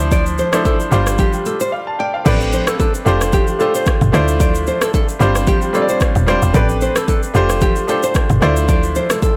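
Smooth and sultry, this afrobeats snippet at 112 BPM swings over Dm9, G7sus4, Am11 and F69 chords, with a short break at 1.7 s before the groove resumes at 2.3 s. An up-front electronic drum kit with a deep kick, rim click, shaker, toms and crash drives alongside a punchy, woody log drum bass with a fast attack, while a brilliant, worn baby grand piano with audible action noise plays close and intimate. A small fingerpicked nylon-string guitar riff carries delay, and distant bongos and congas sit back in a large room, all captured in a blown-out, overdriven recording with light reverb.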